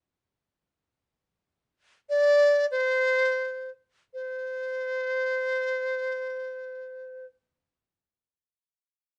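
The recording sits in a moderate studio reverb with a short decay of 0.5 seconds, and its top end stops at 10.4 kHz. This brief cut from a longer piece of Chinese traditional music moves in free time, with a pastoral yet festive mood and tuning set to A4 = 436 Hz. A large bamboo dizi enters alone at 2.1 seconds and carries the solo line to the close at 7.3 seconds, staying between C5 and D5. Its tone is reedy and airy, with the buzz of its membrane, a straight tone and gentle attacks, and it sounds close and up front. The pace slows from 1.6 to 4.1 seconds, and a second section begins at 4.1 seconds.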